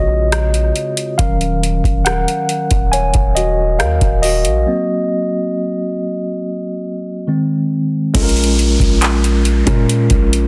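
A straight, unhurried 4/4 pulse at 69 BPM comes from a booming, tape-warm analog drum machine with a deep kick, metallic hi-hats, handclaps, rim clicks and crash cymbal, sitting up front alongside a long, sine-toned 808-style bass that hits with a fast attack and then decays. This longing, sensual contemporary R&B excerpt in Bb minor centres on a mellow, clean tine electric piano heard through its built-in speakers. It takes a solo until 8.1 seconds over Bbm7, Ebm7, Gb6 and Ab/Eb chords, with a break arriving at 4.7 seconds. At 8.1 seconds a quieter electronic downlifter ushers the return to Bbm7, all within light digital reverb and a dense, heavily limited modern master.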